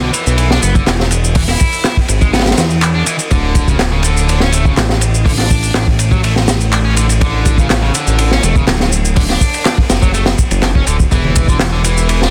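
A sludgy, overdriven electric guitar riff with 12-bit sampler grit and tape echo opens this playful, funky breakbeat excerpt at 123 BPM, alongside a fat, detuned sawtooth bass with a filter sweep, moving from Eadd9 to D and landing on E7(no3) at 11.1 seconds. A crunchy, saturated breakbeat kit sits up front with a punchy kick, high-tuned snare and dark cymbals, joined by a punchy analog drum machine adding handclaps, ride and shaker. Bright, distant congas briefly surface at 11.2 seconds, all within a small room and a dense, heavily limited modern master.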